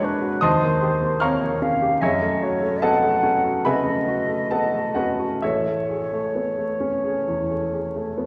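Flowing in an unhurried rubato over a 4/4 pulse, this short excerpt from a longer impressionist classical duo feels luminous and dreamy, with chords drifting from D#13 through F#m9 to Amaj7. A mellow concert flute carries the melody with an airy, straight tone and soft attack, sounding distant, while a clear baby grand piano sits up front with a natural, short-sustained accompaniment spanning a broad range. Both play throughout the 8.3 seconds, heard from further back in a concert hall with a long, wet reverb and a layer of vinyl crackle.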